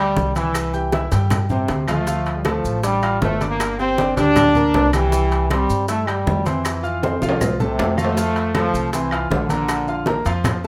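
A brilliant trombone section leads this joyful, danceable salsa passage, cut from a longer piece, playing the melody up front with a tight, pop-style blend and light vibrato. The tempo is 158 BPM in a straight 4/4 in F major. A bright concert grand piano with a deep, smooth, vintage low end supplies the accompaniment, while a dark, thumpy upright bass plucked on gut strings holds down the bottom. The percussion enters in stages and fills out the groove. Damped, low-tuned congas with a thick skin, high-tuned bongos struck with hard hands, and grainy maracas come in at 0.2 seconds. Ringing metal-shell timbales with a vintage, band-limited tone follow at 0.4 seconds, and woody claves heard close and dry join at 0.5 seconds. A drum fill from 7.0 to 8.2 seconds leads into a repeat of the opening section, as the harmony moves through C, Dm, Gm and Fmaj7 before arriving at F and Bb. Moderate reverb from a large studio gives the ensemble a sense of space.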